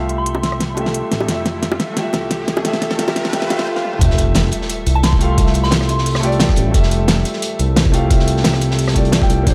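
A smooth, sawtooth-and-square synth bass sits up front through this lush, warm liquid drum and bass passage at 176 BPM in F major, cut from a longer piece and resting on an Fmaj9 chord. A concert grand piano with deep bass and dub echo carries the accompaniment, while a glassy, ethereal FM pad holds very quiet sustained chords beneath it. A soft, pure synth bell adds brief melodic touches through chorus, phaser, low-pass filter and digital delay, and tight, high-tuned bongos patter in the background until 3.6 seconds. The opening build-up features a fat-snared pop drum kit with crisp hats, rim clicks and toms playing a fill, along with a background riser and swell. At 4.0 seconds the drop lands with an impact and sub drop, bringing in a knocking, tape-tinged electronic kick and a gritty, saturated breakbeat kit with a rolled-off top. The whole mix sits in a light, small room reverb.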